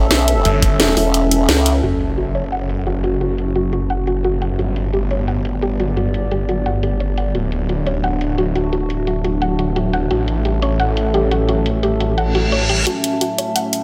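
Dark technical drum and bass at 174 BPM in F# phrygian, tense and aggressive, where a formant-sweep wobble bass opens the drop before a snarling, detuned distorted saw bass joins it from 0.5 seconds, up front beside cracking snare and low-passed hats, a knocking kick, a deep moody analog pad and a warbling lo-fi tape-like pad pumping under sidechain, while a soft round pluck arpeggiates through chorus and tape echo under a filter sweep from 1.8 seconds, with sub drop, reverse cymbal and riser effects framing the F#m7, Gadd9, Dadd9 and A chords in this cut from a longer piece.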